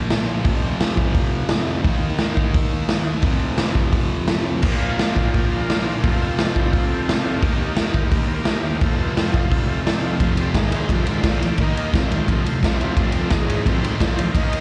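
Garage rock at a swaggering, rowdy 172 BPM in F mixolydian, this live gig snippet, heard through the venue's PA on cassette tape with recital hall reverb, opens on a thick, double-tracked fuzz guitar riff with slapback echo pushed up front alongside a saturated, gritty drum kit with a punchy kick and rolled-off top, before a buzzy, heavily vibrato-laden combo organ slips into the background at 4.6 seconds with sustained chords, and the changes, built on F and Eb, bring in Ab5 once a new section arrives at 10.2 seconds.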